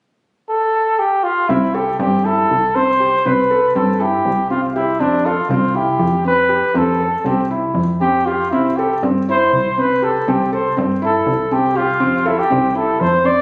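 In a restless, shimmering 7/8 at 240 eighths per minute, this contemporary chamber piece in C major opens with a vintage-toned flugelhorn carrying the melody up front with light vibrato from 0.5 seconds, joined at 1.5 seconds by intimate felt-muted upright piano arpeggios with audible action noise and a punchy, wave-folded analog bass, all over chords shifting between C6 and Fmaj7sus2 in a moderate scoring-stage reverb captured on a phone in the room.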